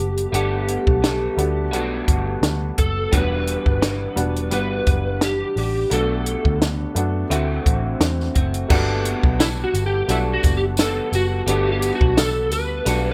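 Indie bedroom pop with a sunny, nostalgic mood at 86 BPM in G major, where a dark, slightly broken-up slide guitar carries the melody over a woody, slightly detuned upright piano, a lo-fi electric guitar through a small old amp with chorus and vibrato, a round foam-muted bass and a punchy, dry cocktail kit with a high-tuned snare, the slide guitar taking a solo from 8.7 seconds as a jingly tambourine joins in the background at 9.4 seconds in this cut from a longer piece.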